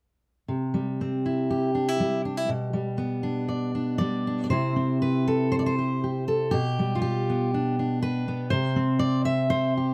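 A full-bodied, fingerpicked steel-string dreadnought acoustic guitar plays alone, up front and closely detailed in light reverb, through this peaceful, rubato folk fragment cut from a longer piece, moving between C and G/B chords from 0.5 seconds, with a new section arriving at 4.5 seconds before it breaks off at 9.9 seconds.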